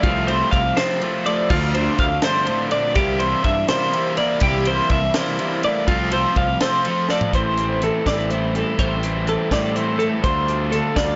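A straight 6/8 pulse at 82 BPM, counted in dotted quarters, drives this wistful, restless math rock and midwest emo fragment, where a twangy, up-front twelve-string electric guitar picks bright arpeggios with slapback echo over a second chorus-washed twelve-string picking accompaniment in the background, a double-tracked overdriven garage guitar riff, a round, fuzz-soaked fingered bass and an airy, polished fusion kit with a high-tuned, softly clipped snare and punchy kick, whose fill at 7.1 s tips the harmony from Fmaj7/C, C9 and C13 into Am7 at 7.3 s, all inside a blown-out, overdriven recording with light reverb and a dulled top end.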